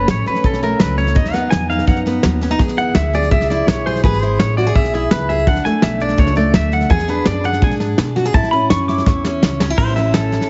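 Honky-tonk and classic country at 167 BPM, easygoing and nostalgic, this cut from a longer piece opens on a twangy, up-front pedal steel guitar solo that runs until 9.8 seconds, played with fingerpicks, slide and volume swells over a progression moving from F#m through B, E, D and E7 to A. A full-bodied, picked dreadnought acoustic guitar sits up front in support, while a woody, growly pizzicato upright bass and a dark, smooth brush kit with a tight kick keep the pulse, the drums adding a fill from 9.1 seconds. Moderate large studio reverb surrounds the band, and heavy multiband compression gives the whole mix a band-limited radio sound.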